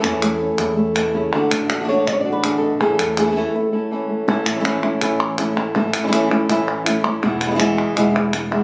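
Set in a straight 4/4 at 163 BPM, this short flamenco cut moves with festive, fiery energy in A major. Crisp, up-front palmas hand claps drive the pulse. A round, punchy fretless electric bass sits low, dark and amped. The lead flamenco guitar carries the melody fingerpicked on fresh strings, its warm acoustic tone placed close. A second, brighter fingerpicked flamenco guitar adds stabs underneath. The harmony moves from A to D, back to A and then to E; a break at 3.5 s opens into a second half from 4.3 s. Captured on a phone in a stone room with about a second of club-like reverb, the piece has a lively, live-in-the-room feel.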